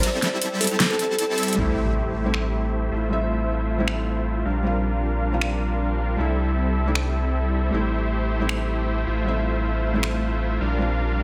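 Huge, detuned supersaw chords with low-pass filter and digital delay carry the riff of this lush, bittersweet future bass excerpt at 156 BPM in A phrygian, riding a deep, saturated sub bass and an overdriven big-room drum kit of finger snaps, metallic hats, ride and a huge snare that drops out at 10.1 s, while a woody, ringing kalimba sounds briefly from 0.6 s, a soft felt-muted upright piano enters in the background at 1.5 s, and an electronic impact marks the move from C6 to Am7 at 1.6 s.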